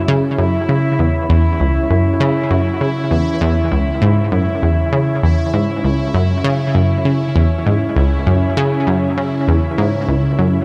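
Ambient, sequencer-driven space music with a mysterious, cosmic mood, where an up-front, round analog pluck with chorus and analog delay plays a low riff from 0.1 seconds over a thick, warbling unison pad holding sustained chords and a bubbling, resonant stepped-filter texture, all bathed in a moderate plate reverb within a dark production on a single C#m chord in this brief cut from a longer piece.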